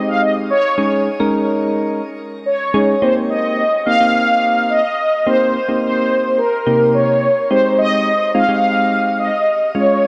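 Nostalgic and wistful, this short pop passage, cut from a longer piece, sets a mellow synth brass melody, brassy, dark and detuned with vibrato, chorus, shimmer reverb and delay, over soft electric-piano-like synth keys that sound round and gentle, their decaying notes colored by chorus, tremolo and shimmer reverb. Both parts sit up front and play together throughout, bathed in a lush hall reverb, while the harmony moves from Abmaj7 and Dbsus2 to Eb6 at 3.0 seconds before returning to Abmaj7 at 7.5 seconds.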